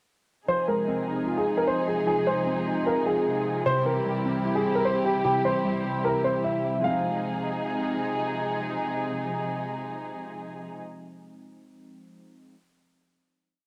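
A brooding, hard-hitting trap and hip hop piece in F minor at 151 BPM with a half-time feel opens at 0.5 seconds on a grand piano playing an up-front, looping melody with long sustain and cassette-tape colour. Beneath it, warbling, detuned lo-fi synth keys with chorus repeat a rising and falling eighth-note arpeggio like a sampled loop, while a muted, veiled string section holds bowed chords with vibrato. After the breakdown gives way to a final chord at 6.8 seconds, the piano stops at 8.0 seconds and the synth keys linger until 12.5 seconds, all within a light reverb and the soft haze of a home cassette recording.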